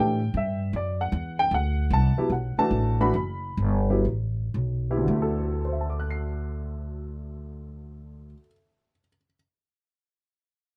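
Hypnotic and open, this brief modal jazz fragment with a swung feel pairs a woody, slightly detuned, present upright piano accompaniment of short sustain with a growly, plucked acoustic upright bass on steel strings, both up front in a dry sound, as the pace slows from 1.5 to 5.1 seconds and the bass stops at 8.3 seconds while the piano continues to 9.4.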